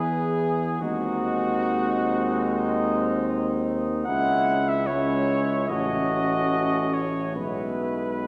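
A slow, rubato 4/4 pulse at 73 BPM carries this tender, hymn-like passage for brass band, cut from a longer classical piece and tuned to A4 = 439 Hz. Up front, a mellow cornet sings the melody with light vibrato and a smooth top, while a soft-attacked flugelhorn adds a second line and a clear tuba anchors the bass with a vintage edge; a solo trombone and a dark, tight trombone section sit in the background as accompaniment. The harmony moves from E through C#m and F#m/A to E/B, heard from further back in a wet church reverb.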